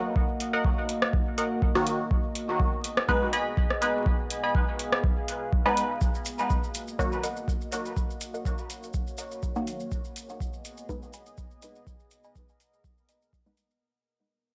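A dry, gritty hardware recording with vinyl crackle and light reverb carries a hypnotic, deep dub techno groove at 123 BPM in Eb minor and Ab minor, where an up-front analog kick and a booming drum machine with metallic hi-hats and rim clicks drive two muted, detuned sawtooth dub chord stabs (one a chorused, echoing riff, the other phased, echoing stabs), both pumping against the beat over a dark, moody, sidechained pad, until grainy maracas enter at 6.0 s as a filter sweep moves across a stab and the music fades out.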